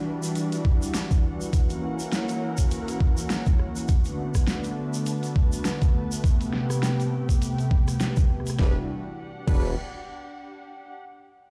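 Funky and gritty, this glitch hop cut from a longer piece moves at 102 BPM in 4/4 with a 16th-note swing, set in E minor and tuned slightly below standard pitch. A detuned, warbling analog pad sits up front with sustained chords and subtle chorus, pumping against the sidechain as the harmony moves from Em9 through F#7, Bm7 and Am9, while a veiled, con sordino string section adds lush bowed texture beneath it and fades across the first 8.6 seconds. An overdriven, knocking electronic kick drives the groove alongside a layered dubstep kit with a huge snare, rim clicks, and hi-hats and crash cymbals darkened by low-pass filtering, and a grainy egg shaker adds a bright, band-limited shimmer. At 8.6 seconds the music turns back to Em9 as a formant-swept wobble bass, saturated and chorused on a low E, arrives with tight, jazz-style horn stabs doubled in octaves and trailed by tape echo. The whole piece plays through a big sound system in a bare stone room, giving it a small, reverberant room ambience.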